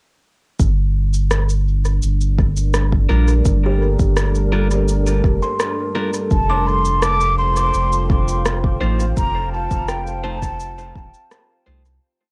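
This ambient dub piece moves at 84 BPM in a straight 4/4, with a deep, hazy mood in G minor, shifting from Gm to F at 6.3 seconds and fading out from 8.2 seconds. A soft, round sub bass sits up front from 0.6 seconds, carrying a dub-style line beneath a tape-softened, layered electronic kick drum playing a slow pulse, while an electronic cabasa and rim click add a sparse, echoing beat with dub echo. A dark, detuned sawtooth pad drifts in at 1.8 seconds with slowly shifting chords, chorus, a moving notch and plate reverb. Clean, compressed electric guitar stabs move one chord shape in parallel, soaked in spring reverb and dub echo, and a woody, hollow kalimba rings in the background with two slow loops of unequal length drifting against each other through analog delay. A breathy, mellow concert flute enters at 6.3 seconds, close-miked and up front, playing motif-based call phrases with dub echo and a cassette-tape tone, and the whole piece carries the light-reverb character of a home cassette recording.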